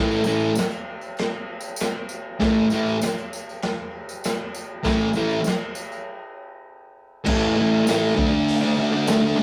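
A straight 4/4 groove drives this swaggering, rowdy garage rock excerpt, cut from a longer piece. A thick, double-tracked fuzz guitar sits up front from the opening, playing a picked, distorted riff that starts on an A5 chord and moves to D5 at 8.2 seconds. A jingly, bright tambourine, close and dry, joins almost at once. A crunchy breakbeat drum kit enters at 0.6 seconds with a punchy kick, medium-tuned snare, hi-hat and dark crash cymbal; its gritty, saturated sound pumps in a small room and has a rolled-off top. A break arrives at 6.1 seconds before the riff shifts into a new section, and the take carries the rough, warm character of a rehearsal-room recording with moderate small-room reverb.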